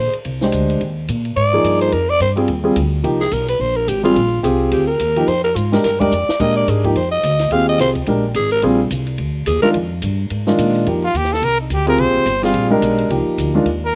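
Modal jazz with a cool, spiritual mood, this excerpt swings briskly as a raspy, growling alto saxophone with slapback echo solos over a dark, mellow concert grand piano (also echoed), a woody, thumpy upright bass and a dry cocktail drum kit with dark cymbals and a high-tuned snare, which plays a fill at 6.1 seconds, before a clear trumpet with light vibrato takes over the solo at 10.9 seconds over suspended ninth chords in a dry, open-air sound.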